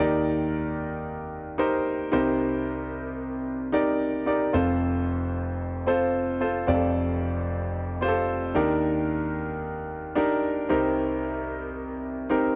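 A dry, close-miked studio sound in a 1970s style frames this short pop piece cut from a longer work, a solo concert grand piano with a warm, deep-bassed, natural tone placed up front. At 112 BPM in a straight 4/4 and in F mixolydian, it moves through Ebmaj7, Cm7 and F before returning to Ebmaj7 and Cm7, ranging from F1 up to D5. The mood is romantic and glossy, and the piano plays alone throughout its 12.6 seconds.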